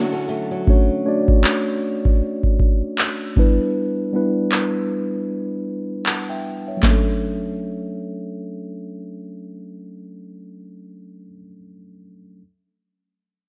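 Dreamy and romantic, this contemporary R&B excerpt, swung on the sixteenths, opens on a brief break where expressive bowed strings with vibrato and portamento sit in the background beside a fingerpicked flamenco guitar through digital delay, both dropping out by 1.3 seconds, leaving an up-front, mellow tine electric piano under a low-pass filter sweep from 0.7 seconds, over a booming, overdriven analog drum machine with deep kick, crisp snare, metallic hats and handclaps that stops at 7.0 seconds, in a dry, rough home-demo mix.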